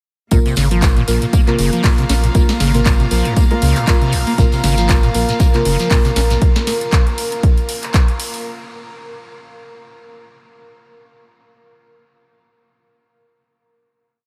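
A punchy four-on-the-floor kick drives this trippy, gritty acid house piece, joined from the start by a squelchy, resonant sawtooth acid line with accents, slides and filter sweeps, a round sine sub bass riff, dark dotted-rhythm chord stabs with chorus and tape echo, a booming drum machine with crisp snare, claps and metallic hats, a very quiet looped jazz breakbeat, and a bright, earthy chamber string section of slowly shifting chords. Overdrive and tape echo roughen the acid line, and sidechain pumping breathes through both basses, the strings and a warbly, nostalgic pad that holds a high note from 4.8 s, while a grainy shekere adds hand-played sixteenths in the background from 4.4 s. The drum machine and strings carry on to the close at 8.4 s.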